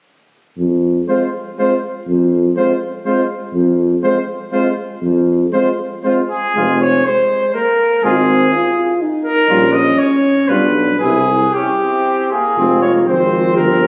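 Solemn and grave, this classical brass quintet excerpt in F minor moves at a rubato 121 BPM in 3/4. A roomy tuba with light vibrato opens the bass at 0.6 seconds before the others enter at 1.1 seconds: an up-front trumpet sings the clear, vibrato-tinged melody, a second trumpet adds a punchy, vintage inner line, and a mellow French horn and a smooth-topped trombone fill the accompaniment. The chords darken through Gdim/Bb and G7/B to a C chord at 11.0 seconds before settling back on F minor, all within the moderate reverb of a scoring stage caught on a phone amid club ambience.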